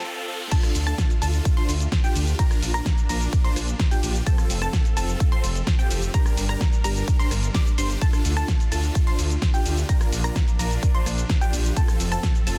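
Festival progressive house in an anthemic, euphoric mood, heard in a short cut from a longer track. A brief electronic riser sits in the background over the opening break, and at 0.5 seconds the drop lands with a punchy, up-front electronic kick and a layered big-room kit of huge snare, hi-hat, ride, crash, rim click and shaker. A detuned saw bass joins at 0.8 seconds, thick and mellow with chorus, pumping under the sidechain alongside the other melodic parts as the chords move through Dm, Bb, F and Gm and back again. Above it, bright, full-bodied supersaw chords carry the riff through a phaser and digital delay, while a detuned unison pluck plays high arpeggios with a moving notch and delay echoes. Behind them, a smooth symphonic string section holds sustained chords with vibrato. The mix is dense and heavily limited, with little reverb, and the kick drops out at 12.3 seconds just before the cut ends.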